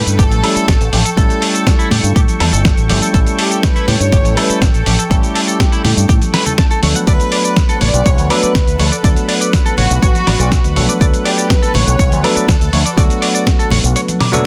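Nu-disco at 122 BPM in A mixolydian, this groovy, sunny excerpt moves from A7 to D6 at 6.8 seconds over a punchy, overdriven electronic kick, a gritty sampler-style soul kit with soft clipping on its snare, and very quiet hard-hand congas. A bright fingered electric bass with an envelope filter pumps against the kick alongside a bell-like tine electric piano with dub echo and a thick, detuned unison pad with chorus sitting in the background. A clean, picked semi-hollow guitar riff with analog chorus and dub echo and a floating, sul tasto symphonic violin section carrying the melody through digital delay complete the dense, heavily limited mix, with a drum fill at 14.2 seconds.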